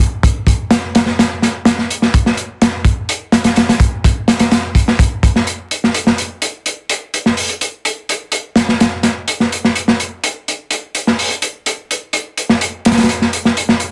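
Breakbeat at 126 BPM in a straight 4/4, this funky, energetic excerpt is carried entirely by a crunchy breakbeat drum kit that plays from start to finish. The kit of kick, snare and hi-hat has an acoustic, small-room character, with a tight kick and a medium-tuned snare, and the whole kit sits up front in the mix. Its tone is dark, warm and saturated, gritty yet smooth, with a rolled-off top end. A moderate studio reverb adds a touch of space, while vinyl crackle lends a worn texture to the dense, heavily limited modern master. The groove shifts into a new section at 5.9 seconds and runs on until the cut at 13.9 seconds.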